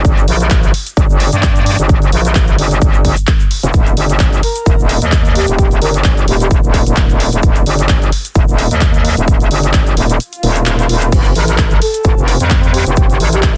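This is a dense, heavily limited modern master with little reverb, and it is cut from a longer bass house track running at 130 BPM in 4/4 with a light swing on the sixteenths. The mood is swaggering and gritty, carried by a metallic FM wobble bass that sits up front, saturated and bright, with chorus, overdrive and sidechain pumping across a low range from Eb1 to G2. A punchy, layered electronic kick drives the groove alongside a big-room dance kit of crash cymbal, handclaps and hi-hat, while a grainy acoustic egg shaker stays close and dry in the background. A breathy, flute-like synth lead with a soft attack, tremolo, vibrato, analog chorus and digital delay floats in at 4.4 seconds and returns near the end, keeping to a narrow range between G4 and Bb4. The kick drops out from 10.2 to 11.1 seconds as an electronic swell sounds in the background, and the harmony moves from G minor to E-flat and then to F at 11.1 seconds.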